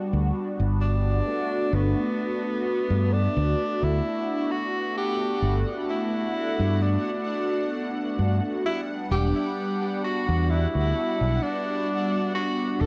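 A woozy, nostalgic vaporwave passage opens on mellow synth brass, a detuned sawtooth pad that sounds brassy and round, with phaser, subtle chorus and tape echo, voicing a rootless Em9 before settling onto Gmaj7 and returning to Em9 at 8.7 seconds. A fingered electric bass joins almost at once, dark and punchy, sitting up front in the low register. At 0.8 seconds a clear tenor saxophone takes the melody in a jazz style, with light vibrato and a veneer of vintage 12-bit sampler grit and tape echo. The tempo is a slow 65 BPM in 4/4 with a gentle swing on the sixteenths, in G major. A moderate echo chamber reverb and a cassette-tape character give the echo-heavy mix its hazy, worn feel, and this short cut is lifted from a longer piece.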